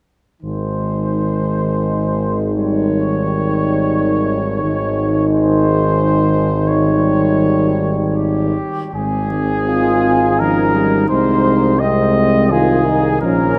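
At 0.4 s a full brass band begins together in a tender, hymn-like classical passage cut from a longer piece, moving in an unhurried triple metre with flexible rubato. Up front, a mellow trumpet section carries the melody with a soft attack, a smooth top and light vibrato. A dark French horn section adds a second line in the background, while a warm trombone section and a close-miked euphonium, both with light vibrato, fill in the accompaniment behind them. A clear tuba anchors the bass near the front. The opening phrase gives way to a contrasting second phrase at 8.9 s, and the excerpt ends at 13.6 s, all of it wrapped in a deep, wet cathedral reverb.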